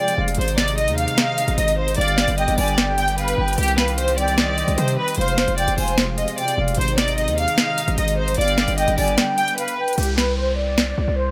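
A half-time trap pulse at 150 BPM drives this dark, eerie hip hop excerpt, with an overdriven kit of sharp snare and metallic hats up front beside a heavy, aggressive 808-style bass whose distorted sine carries a noise layer, while the chords move through Ab, G, Cm and Fm. Over them a smooth studio violin section with light vibrato carries the melody through a low-pass filter, an airy flute line sits distant in the background with digital delay, and muted con sordino strings hold veiled sustained chords under light reverb. The kick drops out at 9.2 s, and from 10.0 s the hi-hats fall away as a filter sweep moves across the violins and an electronic downlifter closes on a rootless Gsus4/C.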